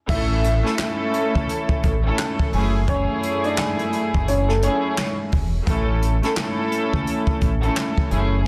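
Soulful and nostalgic, this short boom-bap hip-hop cut sits at 86 BPM in A major with a swung sixteenth-note feel, moving from A to F#m7 and back. A woody, slightly detuned upright piano carries the melody with filtering and delay until 5.2 seconds, over a close, reedy string section with a gut-string, period tone and a deep, round fingered electric bass. A distant, roomy brush kit with dark cymbals, a boomy kick, handclaps and hi-hat fills out a small room, and the dense, heavily limited master carries lossy compression artefacts.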